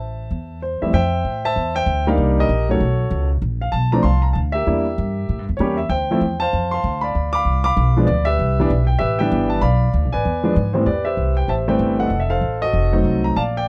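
Close, dry and detailed, this moody, smoky jazz fragment cut from a longer piece swings briskly at 194 BPM in 4/4, with an up-front grand piano carrying the melody in warm, long-sustaining tones over plucked upright bass whose woody, thumpy gut strings sit dark and forward, both playing throughout as the harmony moves from Am through Fmaj7 and Dm7 to G7 and Cmaj7 before shifting at 10.9 seconds to Am9 and F7b9.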